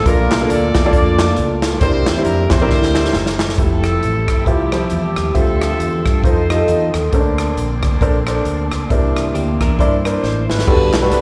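Uplifting and reverent, this brief uptempo gospel excerpt swings at 136 BPM in F major, carried by a live club sound heard through the venue's PA. A punchy horn section states the melody with a slapback echo, resting after 7.1 seconds and returning near the close. Beneath it a woody upright piano and a round fingered electric bass keep the harmony moving from Bbmaj7 through C9, Fmaj9 and Dm11, while a mellow, flute-like tonewheel organ holds chords in the background through a slow rotary speaker, its key click audible. The up-front big-band drum kit, with a punchy kick and airy cymbals, drives the groove and plays fills, and hollow group handclaps join in the opening seconds. From 3.6 seconds a very quiet bowed string section adds expressive vibrato and portamento, and a dark, compressed electric guitar picks a brief second line before the ending lands on Gmaj9.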